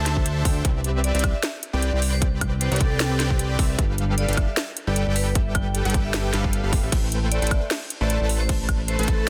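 A bright polysynth riff, a hard-mallet vibraphone melody and a fat analog bass open this short, playful and euphoric future bass cut at 153 BPM in C major, with a half-time feel and a light swing on the sixteenths. Trap drums join at 0.1 seconds, with a sharp snare, metallic hi-hats, crash cymbal and woodblock, and a hard-clipped electronic kick sits up front from 0.2 seconds. The polysynth is bold and detuned, thickened by chorus and tape echo, while the thick sawtooth bass adds ring modulation and a filter sweep beneath it, and all three pump against the kick. Ringing and airy with a fast motor vibrato, the vibraphone floats in the background with its own tape echo. The harmony moves from D7sus4 through Cmaj7 and G7 to Am7, all in a dry, dense, heavily limited modern mix.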